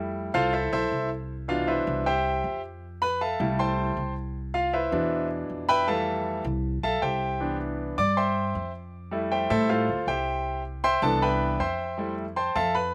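A bright grand piano sits up front for the whole 12.9 seconds of this short salsa passage, taking a solo with a brilliant, polished tone, long sustain and audible action noise that makes it feel intimate and present. Under it, an acoustic upright bass played pizzicato on gut strings gives a dark, woody, thumpy foundation in its low register, mixed well beneath the piano. The harmony alternates between Fmaj9 and Cmaj7 in C major, tuned to A4 = 441 Hz, at a brisk 157 BPM in a straight 4/4. The mood is joyful and danceable throughout this clip cut from a longer piece. The sound is dry and open, recorded outdoors with little reverb.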